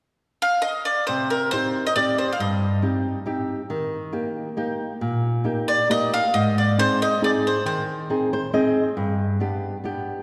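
Wistful and passionate, this Italian folk serenade in three unfolds as a passage from a longer piece. A bowl-back mandolin carries the melody from 0.4 seconds, its picked double strings sounding warm and close. A small, fingerpicked nylon-string guitar joins with accompaniment at 1.1 seconds, finger squeaks audible, and adds a fill at 8.1 seconds over chords moving from C minor through E-flat and A-flat to G, all bathed in a wet concert-hall reverb that sets the listener further back in the room.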